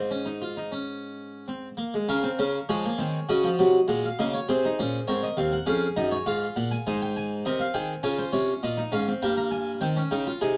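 Classical baroque-style four-part fugue in Db major at 100 BPM, solemn and serious, played by a solo harpsichord of Flemish style with two sets of strings, its airy, plucked, full tone sitting up front under close, detailed microphones and light reverb, ranging from Eb2 to Bb5 across a short excerpt cut from a longer piece, moving from a brief opening on Ab into a longer passage at 2.1 seconds that passes through Ebm7 and Bbm7 before arriving at Eb/G.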